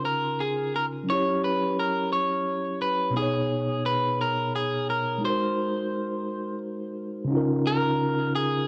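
Warm and intimate, this short R&B excerpt in 6/8 at 58 BPM sets a picked, slightly broken-up, compressed electric guitar melody up front over a mellow, clean tine electric piano heard through its built-in speakers, moving through Db69 and Cb69 in Db major before settling on Db6 at 7.3 seconds, framed by light digital reverb and a dry, gritty cassette-tape sound.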